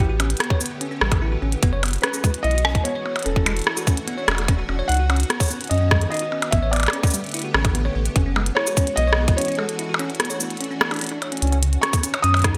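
Intricate and glitchy, this IDM excerpt sets a muted, felt-dampened upright piano melody with audible action noise and delay over silky string-machine chords, clean bell-like electric piano arpeggios, a round sine sub bass and a tape-warm glitch kit of clicky hats, cabasa, rim clicks and blips in gated reverb, while a tight electronic kick drops out at 9.4 seconds for a break and returns at 11.9 seconds, all in bright 1980s-style digital sheen with suspended ninth chords.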